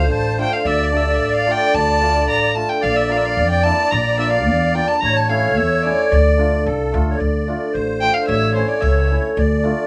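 A nasal, gut-string violin with light vibrato sits up front and carries the melody of this soulful, festive klezmer passage in 2/4, cut from a longer piece, before taking a solo from 7.2 s. Beneath it, a shimmering musette accordion plays a reedy second line, a ringing hammered dulcimer joins with mellow accompaniment at 0.4 s, and a woody, growly pizzicato upright bass sits up front on the low end. The rough home demo mix places the group in a small room with moderate reverb.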